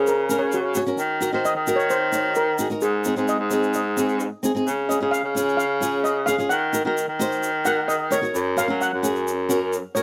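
Calypso excerpt with a festive, carefree mood, where a mellow, shimmering steel pan played with soft rubber sticks takes the lead throughout, over fingerpicked flamenco guitar with audible finger squeak, a breathy baritone saxophone, whispered and intimate with vibrato, carrying the bass line, and a grainy egg shaker, all set in a dry, close 1970s-style studio sound.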